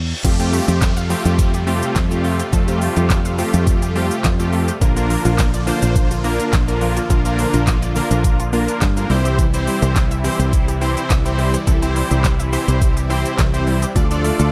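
A reverse cymbal and downlifter sweep in the background over a punchy, foam-muted fingered electric bass, and at 0.2 seconds this driving, confident dance-pop piece drops in full with an up-front electronic drum kit of knocking kick, fat snare, crisp hats, handclaps, shaker and crash. A detuned sawtooth polysynth carries bold, bright chords with chorus, while a phaser-treated supersaw swell evolves in the background and a lush unison pluck plays arpeggios with slapback echo, the bass and all three synths pumping to the sidechain. A grainy tube shaker sits very quietly underneath as the harmony moves from Fadd9 through Bb and C to Dm, within a dark production bathed in digital ambience.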